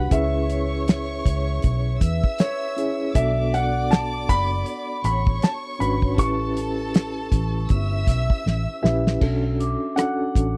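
A cloth-damped, thuddy drum kit sits up front with a fat snare, tight kick and dark cymbals alongside a round, foam-muted fingered bass, setting a silky, smooth 1970s-style soul groove at 79 BPM with a gentle sixteenth-note swing over C#m7, Bm9 and A7. An intimate grand piano carries the melody with audible action noise and long sustain, while a reedy electric piano adds fast tremolo accompaniment and a woody, bowed violin section supplies a dark second line until 9.2 seconds. A mellow vibraphone with soft mallets and slow motor vibrato rings in the background from 2.0 seconds, and a drum fill at 8.5 seconds leads into a new section in this dry, close studio excerpt.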